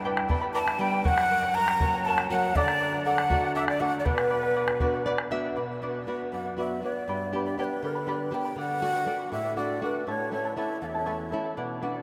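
Soaked in a huge, dreamy reverb, this melancholic, wistful Andean folk fragment in B minor moves at 80 BPM in a straight 6/8: a breathy wooden large quena carries the expressive melody through delay, a cane quena with vibrato and chiff adds an unsteady second line until 5.1 seconds, a shimmering fingerpicked charango and a boxy flamenco guitar with lush chorus and finger squeak accompany throughout, a round bombo sounds until 5.4 seconds, and a nylon-string guitar fill arrives at 4.8 seconds.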